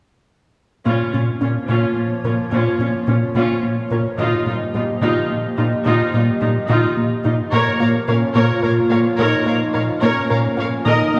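Brooding and futuristic, this cinematic cue in 6/8 at 72 BPM in Bb dorian sets a rich, up-front viola section, a round analog bass riff, a background cello line, a glassy pluck arpeggio and a hollow, chorused pad against Bbm and Ebadd9 chords, before a lush violin second line and mellow French horn chords enter at 7.5 seconds, all heard from further back in a wet scoring-stage reverb.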